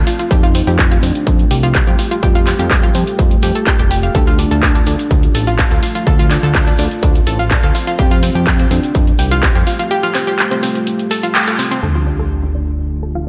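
Melodic techno at 125 BPM in D minor, cinematic and driving, where a distorted, up-front electronic kick pushes until 9.5 seconds alongside handclaps and hi-hats from the techno kit, a grainy tube shaker, a fat detuned analog bass and a moody, deep ambient pad, while a round analog pluck arpeggio with diffuse delay and a soft octave-layered lead with vibrato sit in a dreamy, reverb-soaked mix that moves between Fadd9 and Dm, before both synths get filter sweeps and a sub drop lands with an impact at 11.8 seconds.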